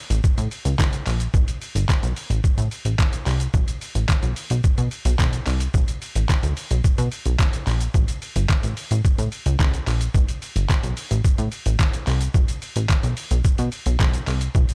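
A straight 4/4 groove at 109 BPM drives this energetic dance-pop excerpt, with a gritty, pitched-down sampler-style trip hop kit of thumpy kick, medium-tuned snare, handclaps, hi-hat and shaker, compressed and re-recorded in a large room, playing up front from 0.1 to 14.7 seconds. Alongside it, a punchy, funky analog bass blending sawtooth, pulse and sine tones spans G1 to B2 with a fast-attack filter pluck that decays, pumping against a sidechain. The mix is dry, with little reverb.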